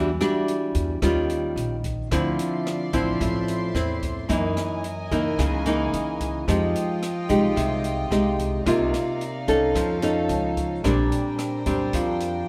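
A fingerpicked nylon-string guitar, up front with a classical touch, opens this sunny, sophisticated bossa nova at 110 BPM in a straight 4/4, joined at once by a woody, thumpy pizzicato upright bass on gut strings and, from 0.2 seconds, an open jazz kit of hi-hat, rim click and a boomy kick. At 2.1 seconds a warm studio string section enters with soft-attack, sul tasto bowed chords that float in a pure ensemble blend above the rhythm. The lush harmony drifts through chords such as Em9, F#13, Cm11 and Faug7 before settling on Bb69, all bathed in a moderate recital-hall reverb, in a fragment cut from a longer piece tuned to A4 = 439 Hz.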